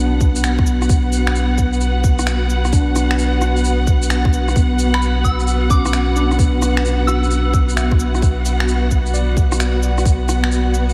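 A dreamy mix soaked in hall reverb and vinyl crackle frames this nocturnal, rainy future garage fragment in swung 4/4, where a worn, slightly out-of-tune tine electric piano with delay, dark, lush bowed symphonic strings and a deep, round sub bass all carry sidechain pumping beside a tight, up-front electronic kick and electronic cabasa, shaker, finger snaps and rim click, while a soft, pure FM synth bell with chorus, phaser and tape echo floats in the background from 4.9 to 7.5 seconds.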